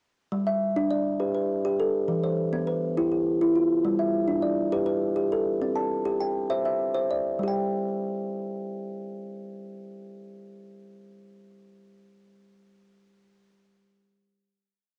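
A steady 12/8 pulse drives this short southern African traditional piece, built on a straight, mbira-style interlocking cycle that feels hypnotic and rippling. A solo kalimba carries everything, entering at 0.3 seconds with a thumb-plucked, interlocking ostinato that spans from E3 up to A5. Its sound is warm, woody and ringing, with the firm body of a solid board, and it sits up front in the mix. The harmony circles through G, E minor, G and C before the cycle gives way at 7.4 seconds to a final G5 note, with the instrument ringing out until 12.2 seconds. A moderate small-room reverb and the soft grain of a home cassette recording lend the whole piece an intimate, homespun character.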